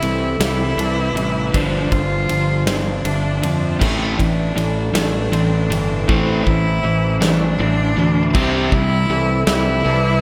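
Brooding and melancholic, this slow 6/8 post-rock build-up in A minor at 53 BPM, cut from a longer piece, sets a clear, focused bowed cello melody with delay over twangy clean guitar arpeggios with chorus and delay, ringing vibraphone arpeggios with fast motor vibrato, a compressed overdriven guitar riff, growly fuzz bass and a punchy big-room acoustic drum kit that stops at 9.7 s, while a very quiet, bright distorted guitar riff joins at 3.8 s, all moving through Cadd9, G7sus4 and Am in a dreamy, reverb-soaked mix.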